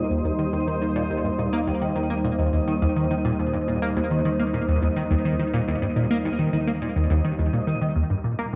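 An echo-heavy mix bathed in a moderate spring reverb opens this cut from a longer piece of ambient, sequencer-driven space music, moving at 105 BPM in a straight 4/4 and resting on an Eb major chord. Up front, a tight sequenced synth drives a riff from Eb2 to Bb3, its detuned sawtooth and square waves given a fast-attack filter pluck and coloured by chorus, phaser and analog delay. Behind it, a sweeping resonant pad holds sustained chords from G3 to C5, blending sawtooth and sine tones with a slow attack, a filter swell and a long release. Deep in the background, an analog drone sits on Eb2 with a warbling, vintage pulse-width-modulated tone until 7.9 seconds, while a twinkling granular texture adds an octave-up FM shimmer on Eb5. Tape-warm electronic cabasa and congas, treated with analog delay, enter at 0.1 seconds and stay low in the mix, rounding out an expansive, cosmic mood.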